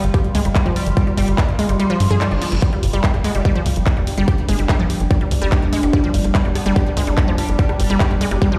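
The sound is big and roomy, like a dance track played on a large system in a bare hall, in this intense, hypnotic psychedelic trance excerpt at 145 BPM in 4/4 over G5. An up-front punchy kick and a tight, tube-saturated sequencer bass drive beneath a lush, detuned unison pluck riff with delay, while a resonant drone with slow attack, chorus and phaser sustains chords whose overtones keep moving, and a layered dance kit adds handclaps, hi-hat, rim click and snare. The kick drops out from 1.8 to 2.6 seconds as a reverse cymbal sounds in the background and a drum fill lands at 2.4 seconds, and a metallic, aggressive FM wobble bass sits low in the mix as a second line from 0.8 and again from 6.6 seconds.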